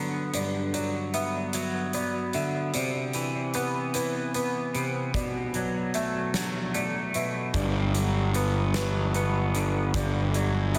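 Set in a slow 6/8 at 50 BPM counted in dotted quarters, with a straight feel, this hopeful, soaring post-rock excerpt in G major moves through Gmaj7, Cmaj9 and Bm7 before returning to Gmaj7 at 7.5 seconds. A twangy, bright electric guitar sits up front with clean picked arpeggios in a low register, thickened by lush chorus and tape echo. Behind it, a felt-muted upright piano adds soft, mellow arpeggios higher up, intimate and tucked into the background with its own tape echo. A huge arena drum kit comes in at 0.3 seconds with hi-hat, a punchy kick and a medium-tuned snare that carries a hall character. At 7.5 seconds a fuzz-drenched picked electric bass arrives on a low G, round and overdriven, pushing to the front of the mix. The whole piece is soaked in a lush hall reverb with a 2.7-second decay, giving it a dreamy, spacious glow.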